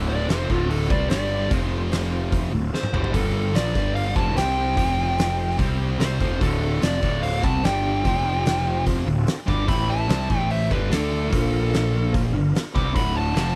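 A sludgy, double-tracked distorted guitar sits up front, churning out a swaggering riff over dominant sharp-nine chords centred on D7#9, while a fuzz-soaked, bright bass drives underneath and an oversized, low-tuned drum kit thumps with a boomy kick, fat snare and a pumping stone-room sound, breaking into a fill at 2.7 seconds. This driving blues rock and southern rock cut moves at 147 BPM in a straight 4/4, with a compressed fuzz lead guitar carrying the melody high above. A very quiet, slightly broken-up second guitar line and a gritty tonewheel organ holding sustained chords through a slow rotary speaker fill out the dry, close-sounding mix.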